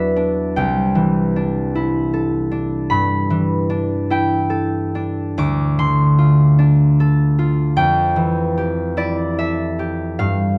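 Gentle and mysterious, this brief classical fragment for solo concert harp drifts in a rubato 6/8 at about 50 BPM, the ringing, fingerpicked strings sitting up front and spanning C2 to D6 through chords of Em9, C69 and G69 before settling into F major at 5.4 s on Dm7 and Fmaj9, all tuned to A4 = 437 Hz and framed by light reverb in a dark, warm production.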